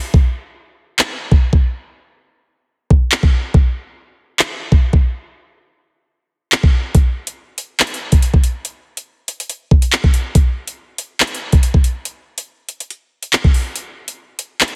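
This dark, ominous hip hop excerpt at 141 BPM in a half-time 4/4 feel is carried by an up-front electronic drill drum kit of knocking kick, handclaps and metallic hi-hats that enter at 6.9 seconds, all with a tape-warm tone in a dry, heavily compressed radio-style mix before a break at 13.8 seconds.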